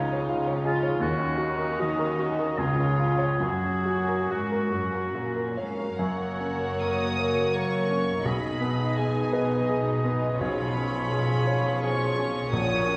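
A clear, present grand piano carries the melody up front in this lush, passionate excerpt from a romantic movement for piano and orchestra, moving in a rubato three-beat metre. Beneath it, a dark, woody violin section with vibrato sings a distant second line in the background, while a soft-attacked viola section floats in the accompaniment and an intimate cello section anchors the bass, all bowed sul tasto. A distant, roomy oboe joins at 0.7 seconds with its own second line. At 5.6 seconds a pure, floating high violin section takes up the melody above the piano, and from 6.0 seconds a very quiet, mellow bassoon adds accompaniment while a close double bass section deepens the low end. The ensemble sits in a wet, reverberant hall acoustic, with some lossy compression artefacts audible in the sound.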